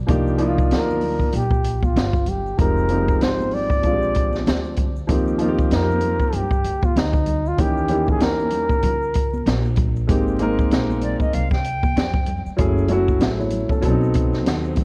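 A woody, thumpy pizzicato upright bass with tube saturation opens this cool, relaxed jazz-hop cut in Eb major at 96 BPM, joined straight away by an up-front concert grand piano with deep lows, an open acoustic jazz kit with a high-tuned snare and boomy kick, and ringing tube shaker and congas in the background, all sitting on a swung 16th-note feel. From 0.7 seconds a breathy, whispered flugelhorn with soft attack and vibrato carries the intimate solo melody through tape echo until 9.8 seconds, and at 11.0 seconds a distant, pure silver flute adds a brief tongued second line over jazzy extended chords. Light reverb and small-room ambience wrap the sound in worn, warbling cassette tape with vinyl crackle and drifting pitch.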